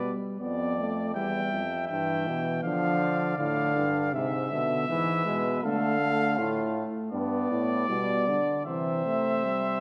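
A straight, unhurried 4/4 pulse at 80 BPM drives this solemn classical canzona for brass ensemble, a short fragment cut from a longer piece in which the voices imitate one another. The trumpet carries the melody up front, singing between D5 and G5 with a light vibrato, while the flugelhorn weaves a soft-attacked second line that sits distant and roomy in the blend. Beneath them, a clear, close-miked trombone supplies the accompaniment in its middle register, and a warm euphonium anchors the bass from E2 to D3 with a roomy presence. All four instruments play together from 0.0 to 9.8 seconds, moving through shifting harmonies such as G/B, Em and E/G# before the music settles into C major at 5.6 seconds and comes to rest on C at 8.7 seconds. A wet concert hall reverb with a 1.8-second decay gives the ensemble a resonant, ceremonial glow.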